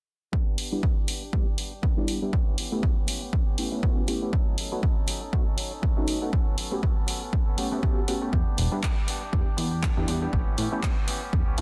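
The groove moves at 120 BPM in 4/4 with a 56% swing on the sixteenths, giving this funky, groovy stretch of filtered disco house in E dorian a loose, danceable bounce. A punchy analog-style electronic kick sits up front from 0.3 s, joined by a barely audible acoustic tambourine blended with egg shaker and group handclap, while an analog drum machine adds handclaps and hi-hat, its hats pumping against the sidechain, both drum sources carrying the sound of a small room. A bright, twangy, clean electric guitar picks a compressed riff low in the mix, pumping and low-pass filtered, as a detuned polysynth comp with a mellow, sustained tone and a fast filter pluck fills out the harmony through chorus, phaser and its own pumping filter. At 8.3 s a wave-folded analog bass enters, plucky and decaying, roughened by tube saturation and also pumping under a low-pass filter. The chords cycle through Em7, A9, B9 and Gmaj9#11 under a filter sweep that spans the whole clip, and the dry, dense, heavily limited master keeps the sound tight and forward.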